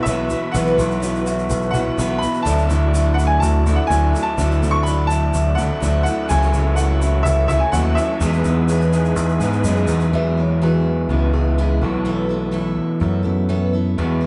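Folk rock and heartland rock at 125 BPM in a hopeful, jangly mood, with a brilliant baby grand piano melody over a full-bodied picked steel-string acoustic guitar, a slightly broken-up electric guitar riff, a punchy up-front electric bass, a reedy tonewheel organ on slow rotary speaker in the background, a barky, lightly overdriven reed electric piano that adds a fill at 8.7 seconds, and a grainy tube shaker, before a woody upright piano second line enters at 10.1 seconds as the band plays on live in a moderate studio room.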